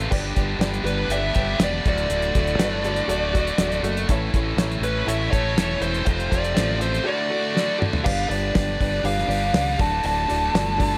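A straight, swaggering classic rock groove in 4/4 rides on a damped 70s drum kit with a fat snare and tight kick, while a growling, overdriven fingered bass sits up front in this sunny snippet cut from a longer piece. Two tight, bright distorted guitars play picked riffs, one tucked further back, beside a detuned, jangly honky-tonk upright piano with woody vintage character and plate reverb. A smooth, dark overdriven lead guitar carries the melody from 0.9 seconds, and after a drum fill at 7.6 seconds the background riff guitar drops out at 8.1 seconds as the lead steps into a solo over light room reverb.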